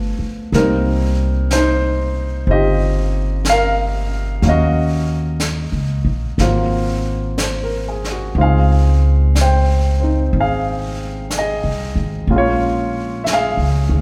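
A tender, late-night jazz ballad fragment opens with an up-front baby grand piano comping in warm, natural tones over a woody, thumpy pizzicato upright bass on gut strings, with a quiet brushed kit and its high-tuned snare and hi-hat joining at 0.5 seconds, all swinging gently at 61 BPM in 4/4 through chords such as Cm7, Ab13 and Dbmaj9 inside the lush reverberation of a recital hall.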